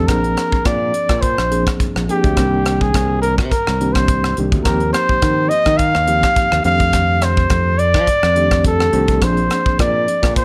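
Lightly reverberant, this short cut of electric jazz fusion feels soaring and slick, with a gentle sixteenth-note swing over a Bb9, Cm7, Eb69, F13 progression that returns to Bb9 at 9.2 seconds. An up-front, warm trumpet with light vibrato and slapback echo carries the melody, while a reedy, barky electric piano, lightly overdriven and pulsing with fast tremolo, supplies the chords. A bright, growly fingered electric bass anchors the low end, and a crisp, airy, polished drum kit enters at 0.1 seconds with hi-hat, rim click and a punchy kick.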